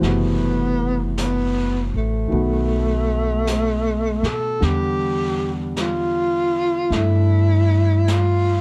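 From the opening second, a breathy, clear alto saxophone with vibrato and scooped notes carries the melody under plate reverb, alongside a warm concert grand piano with deep bass and long sustain, a woody pizzicato upright bass up front and a softly mixed vintage brush kit with a rolled-off top, in a tender, intimate swung jazz ballad at 52 BPM that moves from F#m7b5 through B7 to Em7 in a dark production cut from a longer piece.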